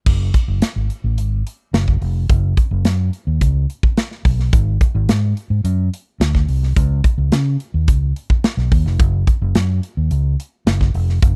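A fingered electric bass, punchy and amped, sits up front with a modern studio drum kit of bright cymbals, medium-tuned snare and punchy kick, both playing from 0.1 to 11.4 seconds in this slick, nocturnal slice of polished 1980s jazz-funk pop in F# dorian at 108 BPM, cut from a longer piece and captured with a dry, close, 1970s-style studio sound.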